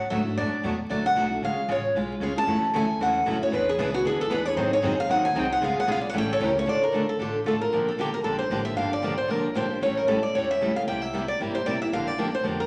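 A bright, up-front picked steel-string acoustic guitar takes a virtuosic, bittersweet solo over a second picked guitar's accompaniment and a woody pizzicato upright bass in this brisk jazz manouche excerpt, with a third guitar joining further back at 2.5 s, finger squeaks audible on the strings, and the key shifting from F# minor to D minor at 6.7 s, all set in a lush studio reverb beneath a veil of vinyl crackle.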